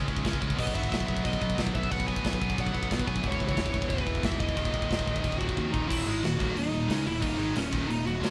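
Heavy metal at 181 BPM in Eb phrygian, relentless and dark, where three bright, high-gain rhythm guitars grind out the riff in the background beneath a round, punchy fuzz bass and an up-front, tight acoustic drum kit with china and crash cymbals, toms and a medium-tuned snare, while a warm distorted lead guitar carries the melody from 0.6 s and a drum fill at 5.6 s ushers in a new section, all captured as a band playing live in one room with light reverb.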